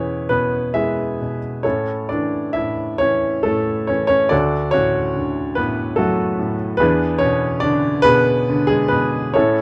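A dark, warm production with light reverb frames this short fragment of a longer classical piece, its tuning set slightly low at A4 = 438 Hz. A baby grand piano plays alone throughout, sitting up front with a natural tone and short sustain, its range reaching from D2 to E5. The mood is wistful and reflective, the lyrical playing moving in 3/4 with a free, rubato feel. The harmony passes from E to A at 1.6 seconds, then to D at 4.3 seconds, before settling on E7 at 6.8 seconds. The fragment ends after 9.6 seconds, leaving the feeling that more is still to come.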